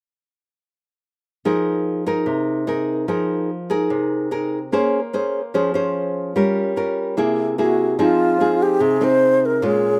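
A breathy, wooden-headed alto flute enters up front at 7.6 seconds, carrying the melody with vibrato, a crisp attack and a slightly unsteady tone over a melancholic, intimate bossa nova in F minor at 147 BPM. From 1.5 seconds, a warm nylon-string guitar, fingerpicked in a classical style and touched with slapback echo, supplies the accompaniment through Fm7, Bbm9, Gm7b5 and Caug7 before returning to Fm7 at 8.0 seconds. This outdoor recording is dry and close, and it is cut from a longer piece.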